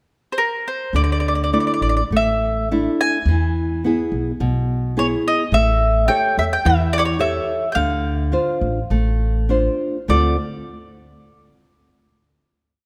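A mandolin opens alone at 0.3 seconds with a round, double-stringed picked motif before a fingerpicked nylon-string guitar with audible finger squeak and a woody, thumpy pizzicato upright bass on gut strings join at 0.9 seconds, unfolding a passionate, mournful fado-style ballad in D minor at a rubato 105 BPM, the guitar's oompah bass-and-chord figures and the bass's two-feel root-and-fifth line supporting sentence-shaped melodic phrases through Dsus2, E, A7 and Dm7 in light reverb before settling on a final chord from 10.1 seconds.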